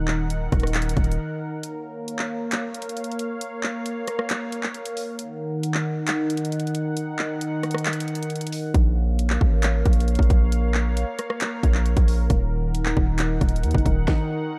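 A detuned sawtooth pad with chorus and a warbling, vintage character opens alongside a punchy sine 808 bass in this menacing, eerie half-time trap excerpt at 135 BPM in Bb minor, while an overdriven electronic kit of hard-clipped kick, sharp snare, bright hi-hats, handclaps and rim clicks drives a dark, dry production; the bass drops away at 1.2 seconds and returns heavy at 8.7 seconds over an alternating Ebm and Bbm chord cycle.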